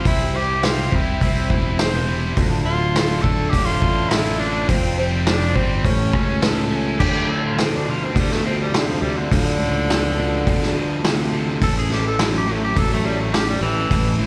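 The sound is that of a small club gig heard through the venue's PA, with a roomy reverb around a brooding, gritty classic rock excerpt in D minor at 104 BPM with a straight 4/4 feel. A vintage drum kit sits up front with dark cymbals, a tight kick, a medium-tuned snare and a saturated, rolled-off top, while a growly, punchy fingered electric bass anchors the low end. Behind them, a distorted electric guitar and a raw overdriven garage guitar play riffs, and a picked plugged-in steel-string acoustic guitar adds accompaniment with audible finger squeak, all three carrying a slapback echo. A bright tenor saxophone with light vibrato carries the melody from the start, also touched by slapback echo, and takes a solo from 7.0 seconds as the chords move from the opening C, Dm, Fsus2 and A7 into Dm and then A.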